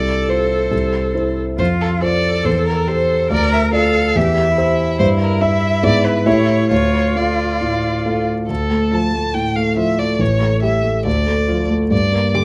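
Close, detailed microphones catch a moderate recital-hall reverb around this graceful, spirited excerpt from a quick classical-period piano trio movement at 140 BPM in 4/4, played with rubato and settling into D minor at 5.0 s. A focused, bowed violin carries the melody up front with vibrato, while a smooth, even cello shapes a second line and a dark, mellow concert grand with deep bass, audible action noise and a vintage, intimate character supplies the accompaniment. All three play throughout, with a new section arriving at 8.5 s.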